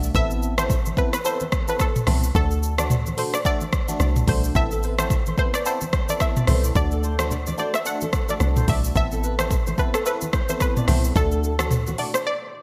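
An up-front electronic afro-pop drum kit, with a deep kick, metallic hats, rim clicks, shaker and toms bathed in gated reverb, drives this hypnotic, smooth afrobeats excerpt, cut from a longer piece, with a swung sixteenth-note feel over a chord loop alternating Amadd9 and D. A round, dark log drum bass and a biting, barking FM electric piano with phaser sit beneath a detuned sawtooth analog pluck melody carrying chorus, delay and a filter sweep, while very quiet congas with thick skins add soft-handed texture. A fingerpicked flamenco guitar enters in the background at 4.7 seconds, and a brief break at 12.3 seconds closes out the bright, 1980s-style digital production with its light reverb.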